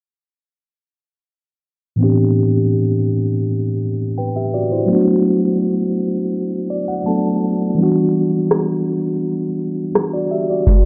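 A lush hall reverb with a 2.4-second tail and a low-pass filter give this short cut from a longer piece a late-night haze, and a filter sweep runs through its whole length. It is contemporary R&B at 83 BPM in a straight 4/4, set in A dorian and tuned to A4 = 439 Hz, with a mood of longing. A mellow tine electric piano carries the accompaniment from 2.0 seconds, clean and up front as if heard through built-in speakers. It moves through Am11, Bm7 and Em9 and adds a brief fill at 6.3 seconds. At 8.5 seconds a booming analog drum machine arrives with a deep kick, crisp snare and rim click, its overdriven tone re-recorded in a small room and placed up front.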